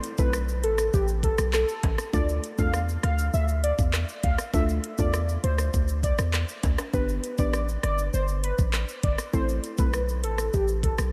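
Soaked in dreamy cathedral reverb and carrying lossy compression artefacts, this bouncy, tough dancehall excerpt rides on an up-front electronic afro-pop kit of knocking kick, metallic hi-hat, handclaps, rim click and shaker, while a barely audible downlifter is gone by 2.1 seconds. A deep, boomy 808-style bass and a velvety, full-bodied synth lead with chorus, delay and vibrato sit forward over a soft, dark, round pluck that pumps under sidechain compression with its own chorus. Close, dry tube shaker and timbales murmur in the background.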